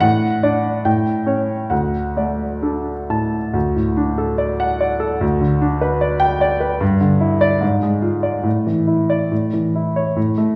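A grand piano plays alone from 0.0 to 10.6 s, its tone smooth and vintage with a short sustain, placed up front and ranging from D2 to A5. This is a brief, lyrical passage from a romantic classical character piece in D major, tuned to A4 = 438 Hz, moving in 2/4 at roughly 64 to 77 BPM with a flexible rubato feel. The opening phrase is stated and then begins again at 3.5 s, settling from D over A through A7 to D before turning toward G over D, Em7 over G and a darker Ddim over Ab. An Asus4 resolving to A leaves the passage poised on the dominant as it is cut off. A wet, reverberant church or concert-hall ambience surrounds the piano, lending the warm mood a spacious glow.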